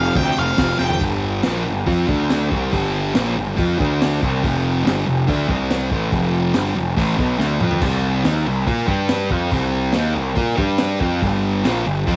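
Garage rock at 141 BPM with a raw, swaggering feel, this excerpt opens on a brief octave-fuzz lead guitar solo that stops at 1.0 seconds, while a thick, double-tracked fuzz guitar riff and a growly, overdriven picked bass sit up front over a crunchy, saturated breakbeat drum kit with a high-tuned snare, punchy kick and dark cymbals, fills landing at 0.8 and 7.4 seconds, all in a small room with light reverb.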